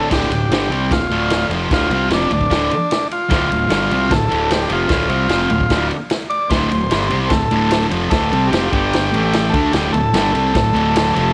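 A thick, bright fuzz guitar sits up front, double-tracked and picked through a low riff, while a buzzy, overdriven combo organ with light vibrato carries the melody through tape echo in this gritty, swaggering garage rock excerpt. Underneath, a round, punchy fuzz bass and a vintage drum kit with dark cymbals, a punchy kick and a rolled-off top drive a straight 4/4 groove. The band holds on D minor for most of the 11.3 seconds before a quick G5 to A5 turn at 8.7 seconds, all in light small-room ambience.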